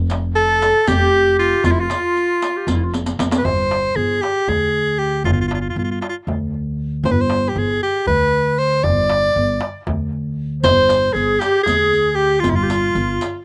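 A woody, dark upright bass opens this stately, festive Turkish makam ensemble excerpt in 7/8, joined at once by a crisp, deep metal-shell darbuka and a riq with dark jingles. A bright, close-miked soprano saxophone carries the melody up front with vibrato, while a breathy, whispered clarinet trails softly behind with scooped notes, both touched by slapback echo. The clarinet drops away as a drum fill begins at 2.9 seconds, and the riq falls silent once the fill ends; both return together at 10.6 seconds. The outdoor recording is dry, with a dulled top end.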